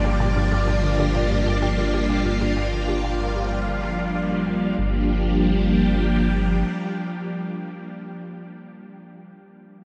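Drenched in a huge, echoing reverb that suggests a vast space, this mysterious, hypnotic fragment of sequencer-driven space music rests on a single Gm7 chord. Up front, a swirling vintage string machine holds bright, phased chords, while a deep, round sine sub bass sustains beneath until 6.6 seconds; in the background a squelchy, detuned blip pluck repeats a riff through chorus and tape echo, and a very quiet, warbling lo-fi pluck traces arpeggios that fade out. A bubbling texture of random, resonant filter steps sits high in the background until 4.8 seconds, when the piece moves into a second section.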